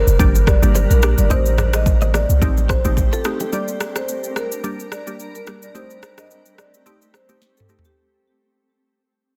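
A dense, heavily limited modern master in digital ambience carries this sultry, mellow afrobeats excerpt at 108 BPM with a lightly swung 16th feel, where a close-miked marimba played with medium mallets sings the melody through delay over a blurred, evolving granular cloud pad washed in its own reverb, a crystalline wavetable pluck with chorus, and chords moving between Gm and Am7b5, while a boomy, up-front 808-style bass and a very quiet, bright, clean electric guitar riff drop away by 3.5 s along with soft-handed congas and bongos, and the electronic afro-pop kit of deep kick, rim click, shaker, toms and a sharp, softly clipped snare closes with a drum fill at 7.4 s as the whole passage fades out.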